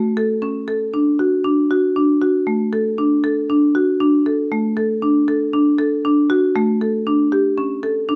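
A solo marimba sits up front in light reverb, its padauk bars struck with medium hard mallets for a woody, dark yet smooth and percussive tone. This short contemporary instrumental excerpt moves at 118 BPM in a straight 7/4 in D major, the marimba ranging from A3 to A4 across its 8.2 seconds. The mood is shimmering and hopeful, cut from a longer piece.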